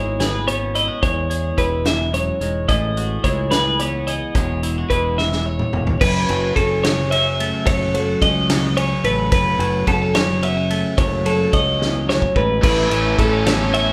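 Intricate and bright, this math rock and midwest emo excerpt moves in a straight 6/8 at 72 BPM, with a clean, twangy twelve-string electric guitar picking arpeggios over a second, warm twelve-string guitar that picks compressed accompaniment through E6, Amaj9, Eadd9 and a long F#m7. A growly fingered electric bass and a roomy indie drum kit with dark cymbals and a punchy kick fill out the band, with drum fills leading into the second section at 6.0 seconds and into the arrival at 12.6 seconds. At 12.6 seconds a double-tracked, overdriven garage guitar riff enters on A6, all heard as a live band sharing one large, reverberant studio room.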